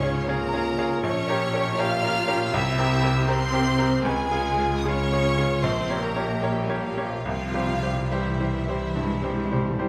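Brooding and passionate, this excerpt from a romantic classical movement for piano and orchestra moves at 70-80 BPM in 4/4 with a rubato feel, tuned to A4 = 438 Hz. A bright, up-front grand piano carries the melody alongside a rich, vibrato-laden violin section, while a second, warm, soft-attack violin section plays an intimate sul tasto line, a viola section fills in the accompaniment, and cellos and a smooth, even double bass section hold the bass. Close, dry timpani join at 7.3 s, all within a recital hall reverb.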